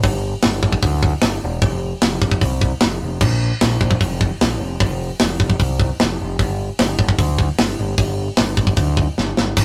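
A growling, overdriven picked electric bass and a tight metal drum kit kick off together in a rowdy, rebellious punk rock burst, both sitting up front in a rough rehearsal-room sound with light reverb and saturated grit. The drums bring bright cymbals, a medium-tuned snare and a tight kick in a straight feel, while the bass churns low beneath them. A quick drum fill closes this short cut from a longer piece at 9.2 seconds.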